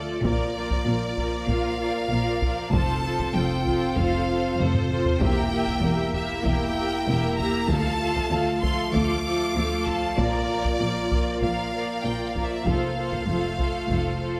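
Cinematic, epic orchestral film score with a heroic mood, cut from a longer piece. A bright, close violin section carries the lush melody over a distant second violin line, while smooth violas and expressive cellos sit in the background, warm French horns hold tight sustained chords, and a double bass section with a soft attack anchors the low end. Close, dry taiko drums struck with heavy sticks enter at 0.2 s and play a fill at 4.6 s, while the whole ensemble sits in a wet scoring-stage reverb as the harmony moves through Bb, F, Edim and Dm.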